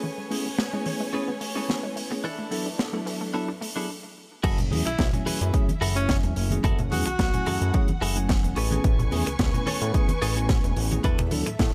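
This nu-disco excerpt opens on a bell-like tine electric piano with tape echo, lush bowed strings with sidechain pumping, a background detuned sawtooth pluck arpeggio with delay, and a twangy, direct-recorded clean guitar riff with chorus, as filter sweeps move across the guitar, strings and arpeggio over Amaj9 and E7sus4 and a tight, dry funk kit with snaps and a high-tuned snare joins at 0.3 seconds. After a brief stop, the drop lands at 4.4 seconds on F#m9 with a punchy, up-front electronic kick and a fat, wave-folded analog bass, followed by low-tuned congas in the background. A bright, punchy tenor saxophone with delay adds a short melody from 4.9 to 7.8 seconds, keeping the sleek, groovy feel at 109 BPM in F# minor with a light swing.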